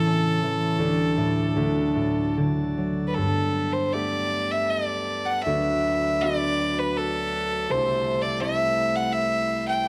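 A fiddle, concert harp and pipe organ begin together in this short cut from a longer Celtic slow air in G major, wistful and tender in mood. A single bowed fiddle carries the melody up front, its clear tone touched by light vibrato and an airy bow, yet intense and a little boxy. The concert harp sits just as close, its fingerpicked accompaniment ringing and warm across a low-to-middle register. Further back, the pipe organ's principal chorus holds full sustained chords in a baroque voicing, with a hint of chiff at each onset. The pulse is a loose, rubato 3/4 at around 71-84 BPM, moving from A through Dsus4 to D before the harmony opens at 3.2 seconds onto Gadd9, D6 and C6. Close, detailed miking and light reverb keep the sound intimate.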